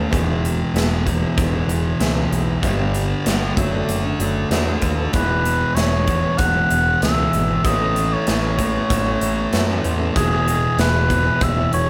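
A classical-style oboe with light vibrato enters at 5.1 s to carry an anthemic, bittersweet melody over a quiet-loud alternative rock groove at 96 BPM in E major, where a thick, up-front fuzz guitar riff, a growling overdriven bass, a punchy big-room drum kit with a medium-tuned snare and a warm fingerpicked steel-string acoustic guitar arpeggiating in the background move through E, G, D/F# and Aadd9 in this excerpt of a band playing live in one room with moderate large studio reverb.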